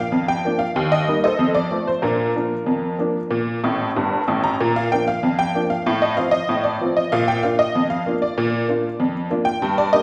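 Ragtime piano in Bb major, this short excerpt moves at 95 BPM in a straight 2/4, with a playful, jaunty mood. A lone honky-tonk upright piano carries the whole piece from 0.0 to 10.0 s, ranging from G1 up to Bb5. Its tone is detuned and jangly with a bright, vintage character, and it sits up front in the mix. The harmony opens on Bb, moves through Eb and F, and returns to Bb, later touching F/A before settling on Bb again at 7.1 s. A piano fill from 3.6 to 4.6 s closes the first passage before the opening material returns at 4.6 s. The piano rings out in a generous recital hall reverb, giving the sound the spacious bloom of a church or concert hall.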